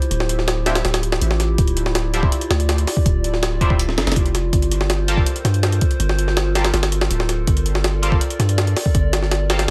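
Atmospheric yet frenetic, this drum and bass excerpt in D minor races along at 163 BPM, its gritty, pitched-up jungle drum kit sitting up front with a thumpy kick, high-tuned snare and hi-hat over a deep, sine-toned 808-style bass that holds long decaying notes. Beneath them, a warbling, nostalgic lo-fi pad sustains dark chords through chorus and reverb, moving from Dm11 to Gm11 at 4.5 seconds. From 0.7 seconds, a nasal, band-passed sawtooth chord stab cuts in brightly, colored by phaser, cassette tape character and dub echo, all set in a digital ambience.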